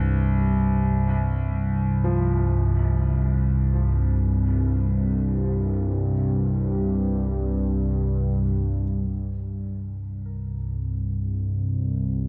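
Drenched in a wet cathedral reverb with a muted top end, this fragment of a dark, desolate ambient drone in free time, tuned to A4 = 438 Hz, rests on an up-front, warbling analog drone with chorus and a filter sweep until 9.1 s, while a smooth grand piano plays arpeggios through a diffuse delay and a very quiet, metallic bronze singing bowl rings on C5 until 9.1 s.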